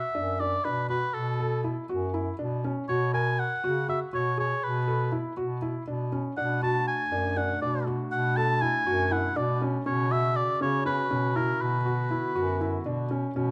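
An up-front oboe with light vibrato carries the melody in this restless, pensive chamber piece in 7/8, over soft arpeggios from an intimate felt-muted upright piano with audible action noise and a distant, roomy bass clarinet line, while a mellow woodwind section joins with background sustained chords at 6.4 seconds, set in light reverb.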